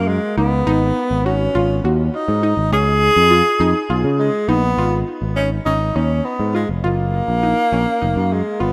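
Tense and brooding, this cut from a longer progressive instrumental moves in an uneven 7/8 with a straight feel. A breathy tenor saxophone carries the melody up front, its whispered, intimate jazz-style line coloured by vibrato, scooped notes and a soft attack, with a digital delay trailing behind it. Underneath, an overdriven picked electric bass lays down a dark, round and punchy foundation. Further back in the mix, a detuned, wave-folded analog pluck built on sawtooth tones spins arpeggios through chorus and delay, its fast attack giving way to a decaying tail. The harmony passes through G#m7 and C# before a second section from 4.8 s moves toward F#maj7. A lush hall reverb surrounds the rough home-demo mix, giving the trio a spacious but unpolished sound.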